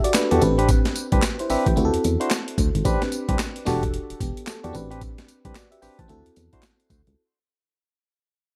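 Punchy and slick, this short new jack swing excerpt in A dorian rides a swung sixteenth-note groove at 111 BPM in 4/4, fading out across its full 7.2 seconds. A compressed, gritty breakbeat sampler-style kit sits up front from the start, pairing a thumpy kick and medium-tuned snare with handclaps, hi-hat and tambourine. A mellow FM electric piano, its fast-attack tones decaying over a noise layer, carries the accompaniment from 0.0 seconds. At 0.3 seconds a round, solid FM bass enters low in the register, alongside clear, clean tonewheel organ stabs played through a stopped rotary speaker. The harmony moves through Am11, D9 and Em11, and the dry, close sound keeps every part crisp and present.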